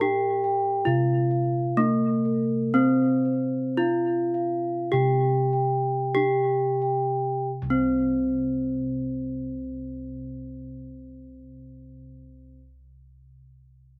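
A dark, up-front bronze metallophone carries the melody with a horn mallet, while a second metallophone struck with padded disc mallets adds airy arpeggios above it and bossed gongs lay down a round, beating bass with a vintage, band-limited tone. This serene, ceremonial Javanese gamelan passage moves in a straight 4/4 between 42 and 73 BPM, slowing down through its first section until 7.5 seconds, when a second section begins. It is cut from a longer piece and recorded outdoors with little reverb.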